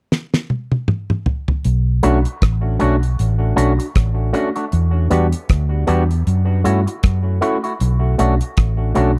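Smooth and bittersweet, this short cut from a longer lovers rock reggae piece moves at an unhurried 78 BPM in B minor, with a gentle swing on the sixteenths. A damped 1970s drum kit opens alone with a fill from 0.1 seconds, its fat snare and tight kick sitting up front alongside hi-hat, rim click and toms. At 1.7 seconds a dark, round, foam-muted fingered electric bass arrives, amped and forward in the mix, as the chords settle on Bm7 before moving through Em7 and F#m7. From 2.0 seconds a barky tine electric piano adds lightly overdriven accompaniment through a combo amp with tape echo, while a twangy, picked electric guitar with an envelope filter and spring reverb supplies compressed stabs. The whole recording is dry and close, in the manner of a 1970s studio session.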